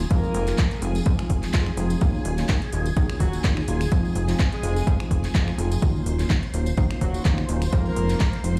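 Filtered disco house with a nostalgic, groovy, lightly swung 16th feel, cut from a longer piece, where an overdriven, punchy electronic kick sits up front beside a funky sawtooth analog bass with a fast filter pluck, while a clean tine electric piano with phaser and pumping sidechain, a swirling, bright string machine with ensemble chorus and phaser, a tight horn section with light vibrato, octave doubling and dub echo, a house kit of finger snaps, handclaps and metallic hats, and a close tambourine in the background move between Fm7 and Ebm9 chords, all heard as if played over a big sound system in a bare stone room.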